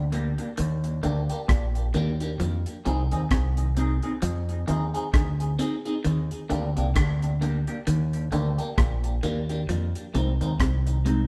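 A deep, round, punchy fingered dub bass opens this uplifting, sunny roots reggae excerpt at 66 BPM with a lilting 16th-note swing in Eb major, joined by a damped, dry 70s drum kit of tight kick, hi-hat and rim click, a compressed, slightly broken-up picked electric guitar colored by phaser and analog delay, and from 0.6 seconds a clean, hollow-bodied semi-hollow guitar riff shimmering with tremolo and delay, all moving between Ebmaj7 and Fm7 as a live band in a moderate stone room.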